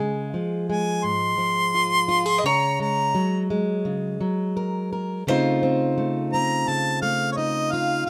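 A straight 4/4 pulse at 85 BPM sets an unhurried, peaceful pace for this hopeful acoustic folk passage, cut from a longer piece and tuned to A4 = 442 Hz. A fingerpicked, plugged-in steel-string acoustic guitar carries the accompaniment from the start, sitting up front with a warm, concert-style tone. Beside it, a woody mandolin, picked on its double strings, adds a quieter second line in a narrow upper-middle range. At 0.7 s a clear harmonica enters with the melody, soloing up front with a soft attack, light vibrato and a classical poise. The harmony moves from Db to Gbadd9/Db at 2.4 s and then to F7/Db at 5.3 s over a Db bass, and light reverb gives the small ensemble a gentle sense of space.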